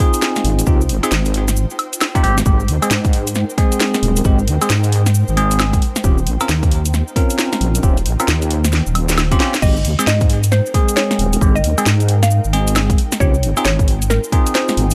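Sunny and bouncy, this two-step UK garage cut moves at 134 BPM in Ab major with a swung 16th-note feel, built on a punchy, overdriven kick and a house kit with cracking snare, bright hats, crash and woodblock, grainy close cabasa, a deep, dark wobbling bass, bell-like electric piano stabs treated with phaser and delay, and an ethereal pad pumping softly in the background through chords such as Dbmaj9#11, Abmaj7 and Eb13, while after a drum fill a woody, mallet-like synth pluck melody enters at 9.6 seconds.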